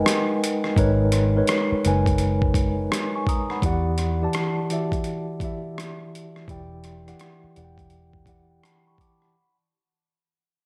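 A mellow tine electric piano accompanies this soulful, sultry R&B and neo-soul excerpt, its clean tone heard up front through built-in speakers as it spans E3 to D#6 and plays a fill from 7.9 to 9.3 seconds. At 84 BPM in 4/4 with a 16th-note swing, the groove moves over a G#m9 chord that shifts to Em9 at 3.6 seconds. A boom bap sampler-style drum kit, pitched down, compressed and overdriven, sits up front with hi-hat, rim click and a thumpy kick, its gritty sound re-recorded in a large room. A vintage muted fingered electric bass enters at 0.8 seconds with a round, punchy, foam-muted tone, amped and dark, moving between E1 and E2. Light reverb and digital ambience give the production a dark, warm character, while a fade-out runs from 0.0 to 9.3 seconds across this passage, which is cut from a longer piece.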